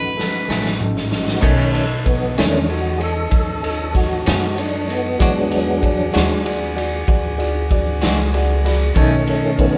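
In 12/8 time, this laid-back, swaggering slow blues opens with a brief crunchy overdriven guitar note over a drum fill from a gritty, punchy garage kit, then from 1.4 s a clear tonewheel organ with slow rotary speaker and key click takes the solo over woody pizzicato upright bass, a present grand piano that adds a fill at 8.0 s, a clean, compressed tremolo guitar in the background and a jazz-style horn section holding sustained chords behind, the band playing live together in a stone room.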